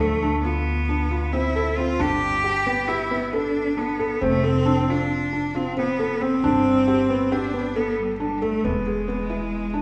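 Moving in a straight, uneven 5/4, this pensive, restless contemporary chamber passage, cut from a longer piece, sets a focused, bowed solo cello melody with vibrato and soft, dark, felt-muted upright piano arpeggios with audible action noise, both up front, over a woody, thumpy pizzicato upright bass on gut strings, the trio heard in the lingering reverb of a church or concert hall.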